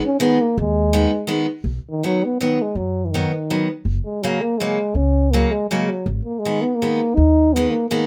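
A lively 3/4 lilt at 163 BPM, lightly swung with a rubato give, carries this festive, jolly alpine dance band fragment in B major, cut from a longer piece. A bright picked steel-string acoustic guitar picks out accompaniment from the start, with a warm, classical-style euphonium taking the solo melody up front from 0.1 seconds. A woody, thumpy pizzicato upright bass joins at 0.6 seconds, under light reverb as the chords move from G#m through B and F#add9 back to G#m.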